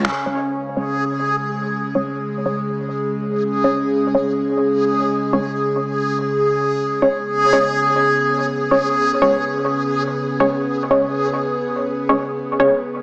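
A muted, deep sawtooth chord stab with a filter pluck, chorus and dub echo punctuates this brooding, dark dubstep excerpt, its filter sweeping across the whole passage over a swung, half-time feel. Alongside it, a detuned, resonant drone with moving overtones sustains chords from the start, and at 0.8 seconds a reversed, granular texture joins, swelling with a dreamy, bright glow. The mix sits in a wet digital room with a small-speaker character.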